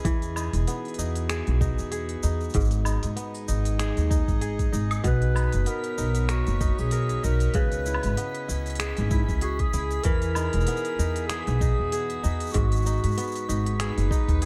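A bright, fingerpicked kora rings out arpeggios through a low-pass filter and digital delay over floating, sul tasto sustained chords from a string quartet, a woody pizzicato upright bass up front, a deep electronic kick, and crisp finger snaps, hi-hat, shaker and woodblock, in a playful 96 BPM folktronica groove with a light 16th-note swing. At 5.1 seconds a smooth, classical-style clarinet enters with a soft-attack solo melody touched with delay, and from 5.4 seconds a sparkling granular shimmer with its own reverb twinkles in the background. Emaj7, G#m7, Bmaj7 and C#m7 chords cycle beneath, and a small room ambience frames this warm excerpt of a longer piece.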